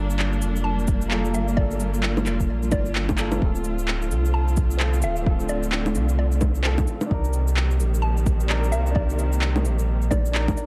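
A deep, round sine sub bass sits up front with sidechain pumping in this ghostly, rainy future garage excerpt at 130 BPM in D phrygian, swung on the 16ths and moving through Gm7, Dm7 and Cm7, while an overdriven, layered electronic kick enters at 0.9 seconds. Overdriven shaker, handclaps, cabasa and bongos, re-recorded in a large room, add a drum fill at 3.2 seconds, as a rich bowed string section with vibrato and a woody background upright piano carry sustained chords and accompaniment through 12-bit sampler grit and pumping, the piano also trailing dub echo. A mellow FM mallet-like pluck with a noise layer plays the melody high in the background through chorus, phaser and delay, all wrapped in a dark production with light reverb and digital ambience.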